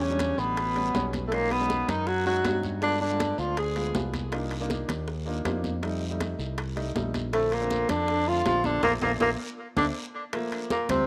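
An excerpt of sunny, sophisticated Afro-Cuban jazz at 160 BPM opens with a breathy, mellow tenor saxophone carrying the melody up front with scooped notes and tape echo, shadowed by a clear, punchy baritone saxophone in the background, both dropping out around 4.0 seconds and returning at 7.3 seconds, over a growly fingered electric bass, a dark baby grand piano, bright high-tuned congas, tight bongos, ringing metal-shell timbales and a raspy guiro, all in light small-room ambience, with a band accent from 8.8 seconds and a drum fill at 9.4 seconds.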